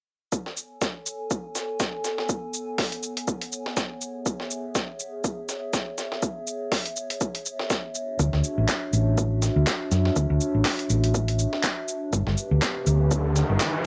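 Sunny and relaxed, this deep house excerpt at 122 BPM in A major drifts over Amaj9, C#m7, Dmaj9 and G6 on a warbling, nostalgic pad with chorus and sidechain pumping, while a gritty, sampler-style soul kit of hi-hat, shaker and snare rides with an overdriven deep electronic kick; then a dark, round hollow-body bass enters up front at 8.2 seconds, overdriven electronic handclaps join at 8.7 seconds, and an electronic riser lifts in at 12.6 seconds, all steeped in a lo-fi cassette home-recording haze.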